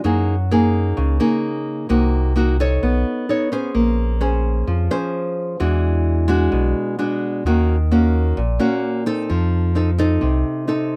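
A fingerpicked nylon-string guitar, small and up front, and a deep, round sine sub bass with a fast attack and sustained notes open together in this melancholic, smooth bossa nova fragment in straight 4/4, moving through rich chords from Gb69 to F7, with the bass dropping out at 10.4 seconds just before the guitar ends at 11.0 seconds, heard through close, detailed microphones with little reverb.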